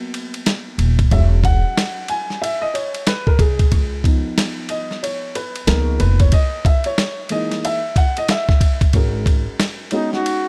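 A dark, boxy baby grand piano carries this cool, nocturnal jazz-hop excerpt at 92 BPM, its short-sustained chords moving from a rootless G#m9 through E6, C#7 and Emaj13 over a gritty, compressed sampler-style drum kit with a thumpy kick and a swung 16th-note feel, while a woody pizzicato upright bass plays in the low register from 0.8 s. Near the close, at 9.9 s, a breathy, whispered flugelhorn steps up front with a brief melody, shadowed in the background by a ringing soft-mallet vibraphone, both touched with slapback echo. A small room ambience frames the sound.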